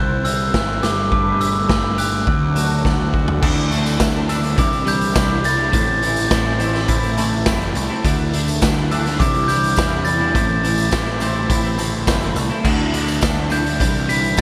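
A mellow, bell-like glockenspiel melody with delay opens this cool, bittersweet indie rock passage, ringing over a compressed, picked twelve-string guitar riff with analog chorus, a clean, fingered twangy guitar in the background with ensemble chorus and delay, and a fuzz-overdriven bass, while a saturated, gritty garage drum kit joins up front at 0.2 s. After a drum fill, the chords settle into a Dsus2, Cadd9 and Am cycle, and a very quiet, jingly tambourine enters at 3.9 s. The bright 1980s-style digital production sets the music in a lush hall reverb with a small room, and the kit carries its own pumping stone-room sound with a boomy kick and a rolled-off top.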